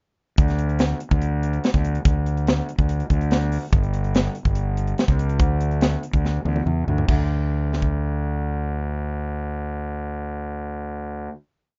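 Playful yet wistful, this short, complete math rock and midwest emo piece moves at 143 BPM in a straight 4/4. A fuzzed, fingered electric bass and a crisp fusion drum kit both enter at 0.4 seconds. The bass sits low and up front, dark and round with overdriven grit, and it stays locked to the punchy kick drum. The acoustic kit plays a funk groove with a high-tuned snare, hi-hat, toms and crash cymbal, and it sounds airy and polished in a studio room. A drum fill at 6.2 seconds leads into a final note, and after the drums stop at 7.9 seconds the bass rings on alone until 11.3 seconds. The sound is dry and close, with the rough, dulled top end of a home demo mix.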